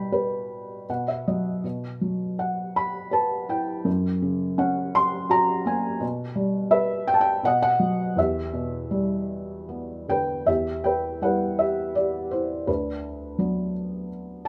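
In a rubato three-four lilt, this reflective, wistful fragment of a longer lyrical classical piece features a solo felt-muted upright piano, up front, dark and intimate, with thick felt, short sustain and audible action noise, adding a brief fill at 0.5 seconds, moving through chords such as Bsus4, F# and Em7, then turning to a new passage at 10.5 seconds that settles from Em to D6, all within a moderate studio reverb.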